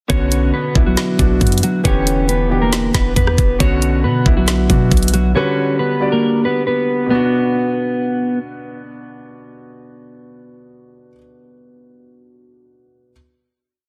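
An eerie, brooding trap beat opens with everything at once: a mellow, fingered electric guitar loop doubled in octaves and coloured by analog chorus and digital delay, over spread, rhythmic chords from a dark, vintage-sounding grand piano with short sustain, both repeating like a sampled loop. Underneath, a half-time trap kit pairs a knocking kick and woody snare with bright hi-hats and fast rolls, while a clean, boomy sine-like 808 holds long sub-bass notes that follow the kick and slide in pitch. The drums and 808 drop out around 5.2 seconds, the guitar stops by 8.4 seconds, and the piano continues through a final chord to 13.1 seconds, all in a dense, heavily limited mix with light reverb and lossy compression artefacts.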